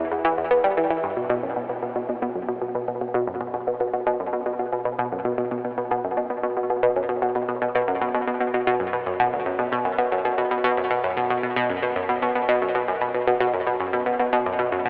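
Mysterious and expansive, this ambient excerpt at 114 BPM in a straight 4/4 features a solo analog pluck, round and nasal with a bright sawtooth edge, a noise layer and a fast, short filter pluck, sitting up front from D2 to B3 through chorus, phaser and tape echo, while a huge, wet reverb and a cassette-tape, telephone-like sound envelop the whole excerpt, which shifts into a new section at 1.2 seconds.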